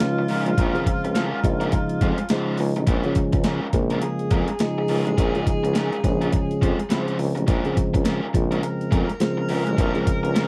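A dry, close 1970s-style studio sound frames this sly, hypnotic funk excerpt at 104 BPM in Bb minor, with swung sixteenths riding a single Bbm7 as gritty, overdriven breakbeat drums with a thumpy kick sit up front, a clear tuba carries the bass with vintage vibrato, percussive tonewheel organ stabs with key click turn through a slow rotary speaker and slapback echo, raw overdriven garage guitar picks out the accompaniment, and a breathy, distant tenor saxophone adds a mellow second line.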